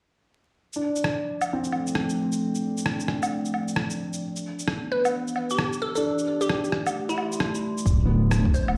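A muffled, overdriven clatter of electronic shaker, rim click and woodblock opens this ghostly, wistful future garage excerpt at 132 BPM with a swung 16th feel in D dorian, joined at once by a soft felt-muted upright piano with dub echo and a warbling, lo-fi tape-like pad that pumps under sidechain while a filter sweep moves across it. A glassy, crystalline wavetable pluck takes the melody from 4.9 s, bright and up front with chorus and digital delay, as the chords move from Dm through Em7 and Am7. At 7.9 s a deep, layered electronic kick and a menacing, detuned saw bass with a filter swell arrive on the return to Dm, all heard through a big sound system in a bare room with large reverb and vinyl crackle.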